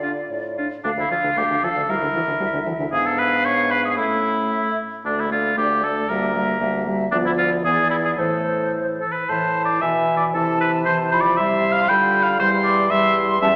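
A quick, restless classical-period movement for wind quintet opens in D minor at around 108-119 BPM in a rubato 2/4, with all five players entering together: a hollow, mellow silver flute carries the melody with vibrato and a crisp attack, while an up-front, vintage-toned oboe sings the second line. Beneath them a dark French horn with vibrato and a distant, roomy clarinet set in the background supply the accompaniment, and a close-miked, warm bassoon with light vibrato anchors the bass. The mood stays urgent as the harmony turns to A minor at 7.1 s, and the ensemble sits in the wet ambience of a scoring stage with a 1.9-second reverb tail through the end of this excerpt from a longer piece.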